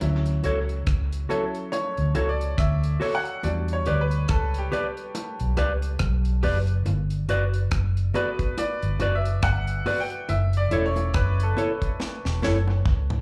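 A bright, worn grand piano takes the solo with slapback echo over a round, foam-muted fingered bass sitting up front, a dry reggae drum kit with a high-tuned snare and dub echo, and soft, low-tuned bongos in the background, while a dark, clean electric guitar adds stabs from 0.4 seconds in this smooth, romantic lovers rock excerpt, which is heard through a club PA with light reverb and moves from Dmaj7 through Em7 and Gmaj7 to F#m7 before a drum fill at 12.0 seconds.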